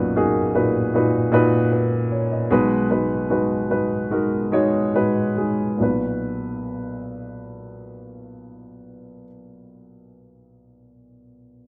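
A dark, woody upright piano opens on a Bmaj7 chord and carries this tender, heartfelt pop fragment in B major, playing accompaniment across its full 11.7 seconds at a slow 69 to 78 BPM in straight 4/4. The tempo eases back over the first 5.8 seconds before a new section begins, the mellow, vintage tone sitting up front in a small room with light reverb.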